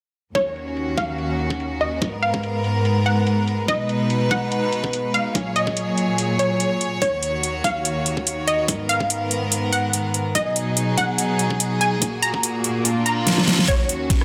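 A moderate, lush hall reverb surrounds this chaotic, aggressive heavy wobble dubstep passage, cut from a longer piece and set at 144 BPM in 4/4 with a half-time feel and a light sixteenth-note swing in Eb minor. Up front, a rich chamber string section holds bowed, earthy sustained chords with light vibrato and a smooth top, pumping against the sidechain as the harmony cycles through Ebm7, Abmadd9, B6 and Gbadd9/Bb before a Bb chord returns it to Ebm7. Above them, a punchy, detuned unison pluck built from sawtooth and triangle waves, wave-folded with a fast attack, carries the melody and trails off into dub echo. The dubstep drum kit sits up front with a huge snare, metallic hi-hats and a rim click, its hats and snare shaped by high- and low-pass filters, while a filter sweep moves across the drums through most of the passage. An overdriven, knocking electronic kick, re-recorded in a small room, anchors the low end. 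Near the close, a reverse cymbal sounds in the background at 13.0 seconds, and drum fills run from 13.3 seconds to the end.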